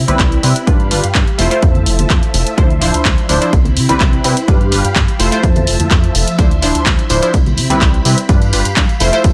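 Funky and groovy, this short cut of filtered disco house runs at 126 BPM in a straight 4/4, cycling through Cmaj7, G7, Fmaj7 and Dm9 under a filter sweep that spans the whole passage. A dry, punchy electronic kick sits up front from 0.2 seconds, alongside an analog drum machine's handclaps and pumping hi-hats, a very quiet, close tambourine and congas, and a plucky, wave-folded analog bass with tube saturation. Above them, a detuned, chorused polysynth comps in snappy filter plucks, while a swirling, vintage string machine holds bright, slow-attack chords through ensemble chorus and phaser, all in a room with little reverb.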